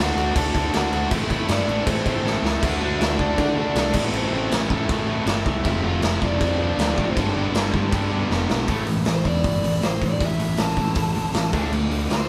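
Punk rock in A minor at 158 BPM, raw and aggressive, with a band playing live in a stone room as a gritty, punchy garage drum kit sits up front, a growly overdriven bass drives underneath, three overdriven rhythm guitars churn riffs (one of them biting and double-tracked, very quiet), and a biting lead guitar carries the melody before taking a solo at 8.7 s after a drum fill, over chords moving from D and Am through F and G to Dm.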